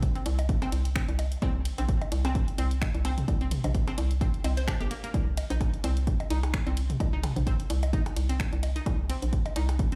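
Heard through a big sound system in a bare room with large studio reverb, this hypnotic, sparse minimal techno excerpt rides a swung sixteenth-note feel. A dry, punchy electronic kick sits up front beside a bouncy, knocking FM bass with fast attack and sidechain pumping, while an analog drum machine adds finger snaps, hi-hat and ride cymbal, and electronic blips and toms drift through dub echo. From 0.2 s a bright, detuned square-wave pluck carries the riff, its hollow filtered tone thickened by a sub octave and noise layer and spread with chorus, sidechain pumping and dub echo.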